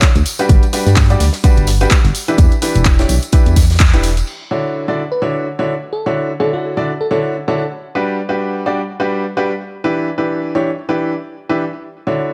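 A joyful, feel-good piano house excerpt at 127 BPM in D major, with a light swing, opens with a bright, woody upright piano riff carrying sidechain pumping and tape echo, alongside a punchy, up-front electronic kick, a very quiet, dry acoustic kit with a fat snare, a house kit of low-pass-filtered hi-hats, handclaps and crash, a background tambourine, and a round, dark FM bass that also pumps, before a band accent and the end of the drums, percussion and bass at about 4.3 s leave the vintage piano cycling through Gmaj7, Em7 and Dmaj9 in light studio reverb, joined from 5.1 to 7.7 s by a sparkling, bell-like FM electric piano melody with chorus, cassette-tape colour and a mellow glow.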